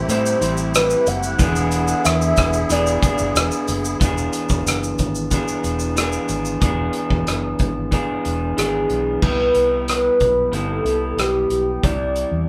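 Lonely and hazy, this unhurried 92 BPM indie bedroom-pop fragment, cut from a longer piece, sets a velvety, chorused synth lead singing from 0.0 to 3.7 s and again from 8.6 s over a slightly broken-up, vibrato-tinged guitar through a small old amp, a reedy, shimmering musette accordion holding chords until 4.0 s, a round, foam-muted vintage bass and a roomy, loose drum kit with dark cymbals, punchy kick, rim click and shaker, all moving from Am7 and E7 to a closing Cmaj7 as the band plays together in one room.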